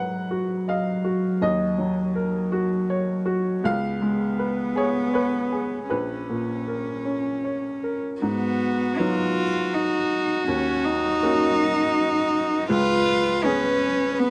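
A warm, intimate cello with light vibrato and an airy sul tasto bow carries the second line over a bright, woody upright piano accompaniment from the start, and a dark, softly bowed solo violin takes up the melody at 8.2 seconds in this fragile, melancholic neoclassical excerpt in G# dorian, drifting in a rubato 3/4 at 80 BPM through a repeated G#m7–D#m7–C#7 progression, closely and dryly recorded.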